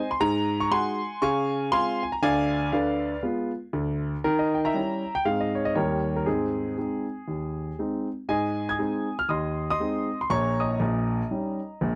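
Playful and exuberant, this short stride piano passage in jazz swings along at 119 BPM in 4/4, cut from a longer piece. A clear grand piano plays alone from start to finish, ranging from Bb1 up to Ab6 in Ab major. Its tone is present and up front, with long sustain ringing through a dry, gritty recording that has little reverb. The harmony moves through colorful changes such as Ab7, Dbmaj7, Ddim7 and Eb7b9 before settling on Ab. A second pass through the opening material begins at 8.3 seconds and reaches Eb7/Bb at 10.3 seconds as the clip closes at 12.0 seconds.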